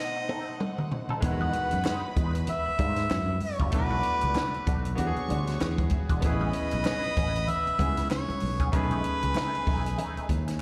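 A swung sixteenth-note groove at 96 BPM in 4/4 drives this lush 1970s-style soul excerpt in E major, which opens on a drum-fill break over a B7b9 chord. A compact cocktail kit with a punchy kick and high-tuned snare plays the fill, and at 1.2 seconds a growly fingered electric bass arrives up front as the harmony settles onto Emaj9, followed by handclaps at 1.8 seconds. Out front, a mellow harmonica carries the melody with a slapback echo, supported by a bright grand piano whose action noise can be heard and a smooth, vibrato-laden studio string section playing a second line. Tucked behind them, a clean, compressed semi-hollow guitar plays a riff through wah, while soft-handed, thin-skinned congas sit very quiet in the mix and the hollow group handclaps stay in the background. The chords move through Bm7, E9 and Amaj9 to B13, and the whole excerpt has the smooth feel of a live gig heard through a venue's PA, with small-room ambience and recital-hall reverb.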